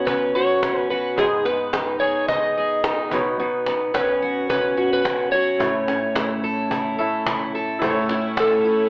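A swung sixteenth-note feel at 108 BPM in 4/4 carries this tender, wistful acoustic pop fragment, with a woody, distant cajon keeping time beneath a dark, shimmering fingerpicked twelve-string guitar and a clear, polished grand piano in the background, moving through Badd9, G#m and A. Up front, a slightly broken-up electric slide guitar sings the melody, and at 7.8 seconds a lush, bowed string section enters with smooth, vibrato-laden sustained chords. The whole is wrapped in moderate studio reverb and an AM radio coloring.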